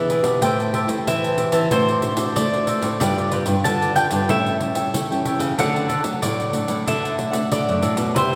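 A lively, festive samba and choro passage, cut from a longer piece, opens with a woody, double-strung picked mandolin solo over crisp cavaquinho and a fingerpicked classical nylon-string guitar, full-bodied with fresh strings and audible finger squeak, while a second, smaller nylon-string guitar fingerpicks the bass line. A jingly pandeiro joins at 0.1 seconds, heard close and dry, as the chords move from Am7 through D7/A, G7 and A7 to D. The group sounds as if captured in a church or concert hall, wrapped in a long, wet reverb.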